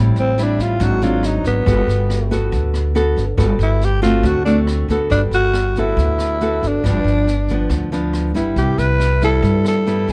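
A breathy, growling tenor saxophone with vibrato and scooped notes solos up front through the first 5.1 seconds of this romantic, sophisticated bossa nova cut in G major at 139 BPM, over fingerpicked nylon-string guitar, a woody, growly pizzicato upright bass and a distant, roomy brush kit with a high-tuned snare and boomy kick, all in a dark, dry production moving from Am7 through Gmaj9 to Cmaj7.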